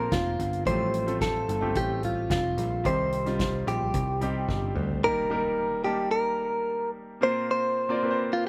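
A clean, direct-recorded electric guitar carries the melody up front, its bright, compressed picked tone sitting between F4 and C5 for the whole 8.5-second excerpt of this hopeful piano-driven pop piece in F mixolydian at 110 BPM. Beneath it, a brilliant concert grand piano supplies accompaniment with deep bass, short sustain and a slapback echo, moving through Fadd9 and Cm before Eb and Bbsus2. A very quiet, full-bodied jumbo steel-string acoustic guitar plays a fingerpicked riff, while a growly picked electric bass and a soft-mallet drum kit with a boomy kick, medium-tuned snare, hi-hat and toms hold the straight 4/4 groove. The drums play a fill at 4.5 seconds, and at 5.0 seconds the bass and drums stop as a faint electronic impact with its own slapback echo arrives in the background. The acoustic guitar drops out at 5.5 seconds. The guitar melody and piano carry the dry, open-air sound to the end, with the impact lingering beneath them until 7.2 seconds.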